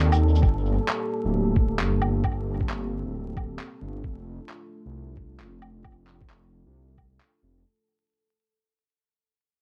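Swung sixteenths at 133 BPM drive this rainy, nocturnal future garage piece, where a muffled, thumpy electronic kick sits up front from 0.4 s alongside compressed, sampler-style shaker, woodblock and handclaps steeped in tape echo, while a deep, rumbling detuned saw bass and a moody analog pad with chorus and 12-bit sampler grit both pump to the sidechain through a shift from Gm to F6 over an airy, breathy wind-like noise texture, the echo-heavy mix flecked with vinyl crackle and fading out throughout.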